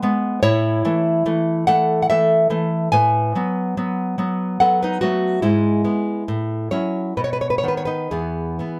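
A gently flowing rubato in 3/4 sets the pace, hovering between 61 and 73 BPM so the pulse breathes freely from bar to bar. This short excerpt from a romantic piece for solo classical guitar has a tender, warm mood. The fingerpicked nylon-string guitar sits up front, its acoustic tone intimate, with audible finger squeaks adding a human touch as it ranges from E2 up to G#5. The harmony opens on A, moves through a B7 omitting its third over A at 2.9 seconds, and passes by E/G#, F#m7/A and B before settling on E at 8.1 seconds. Light reverb gives the instrument a soft halo. The guitar is tuned slightly high, to A4 = 441 Hz.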